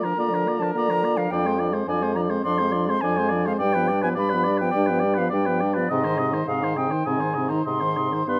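A stormy, urgent wind quintet opens together in this short cut from a quick classical-period movement at 104 BPM with a rubato feel and tuning at A4 = 444 Hz, the pure, tongued flute melody sitting up front over a distant oboe second line with light vibrato, a dark clarinet in the background and a smooth-topped French horn in the accompaniment, and a mellow, roomy bassoon bass with vibrato, all moving through Bb/D, Dm7b5/F, G7 and Ab in a close, detailed sound with light reverb.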